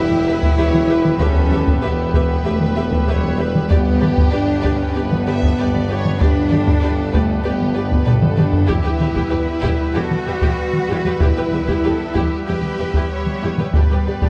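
Dramatic and epic, this cinematic orchestral film-score passage in straight 4/4 moves between E minor and G major, cut from a longer piece. A barely audible, huge impact opens it, and heavy-stick taiko ensemble drums, compressed, saturated and up front, drive from 0.1 seconds, with a drum fill at 8.1 seconds. A focused violin section carries the melody with vibrato and a smooth top, while a second, more distant violin line, a lush viola section and a close cello section sit in the background. Dark French horns and a soft, shimmering pipe organ on celeste string stops hold sustained chords, and a clear tuba and woody double basses anchor the low end. A moderate concert hall reverb gives the dark production its space.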